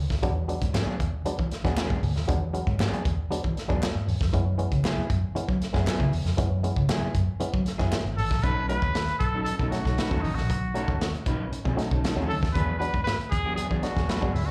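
Heard through a venue's PA with club reverb, this energetic live funk excerpt rides a gritty, saturated breakbeat kit with a tight kick and a round, punchy muted fingered bass, while stringy clav stabs and a dark, slightly broken-up electric guitar carry plate reverb and slapback echo, very quiet crisp handclaps sit in the mix until 8.0 seconds, and a clear trumpet with scooped notes and light vibrato takes the melody up front from 8.2 seconds.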